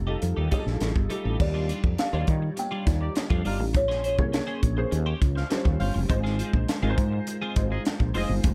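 A dry, close-sounding cut from a longer piece of polished 1980s jazz-funk pop at 102 BPM, breezy and upbeat, where a buzzing kalimba carries the melody until 4.6 seconds over a dark grand piano with ensemble chorus, a woody, growly fretless electric bass, a compressed twelve-string electric guitar riff with analog chorus and a crisp fusion drum kit with bright cymbals and a punchy kick, while a tight, vintage horn section adds a second line from 3.0 seconds as the chords move from F9 to Ab6.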